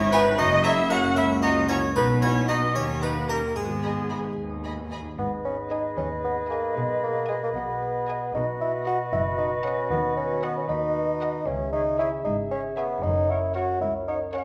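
Sneaky and quirky, this cinematic cue in 6/8 opens with a full, plucked harpsichord carrying the melody until 4.3 seconds, while a lush, distant viola section with a soft attack and portamento, a dark French horn section holding sustained chords, ringing harp arpeggios, and bowed cello and double bass sections underpin it. A rich violin section in the background joins the melody, with second lines from an airy, hollow flute, a mellow cor anglais, a bright clarinet, and a very quiet, smooth second violin section. At 5.2 seconds an up-front, close-miked bassoon joins the accompaniment, all set in a wet recital hall reverb.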